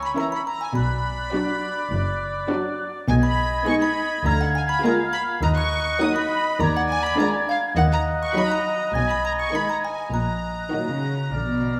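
A moderate scoring-stage reverb surrounds this quirky, mischievous film cue excerpt at 103 BPM in 4/4, which starts in B minor and shifts to Eb minor at 3.1 s. A delicate, tinkling music box, bright and dry, carries the melody together with a floating, sul tasto violin section, while an airy, hollow flute group and a distant oboe with light vibrato weave second lines above a softer background line from more violins. Intimate violas supply accompaniment, dark French horns hold sustained chords, and rich double basses with close, gently vibrato-touched cellos anchor the bass.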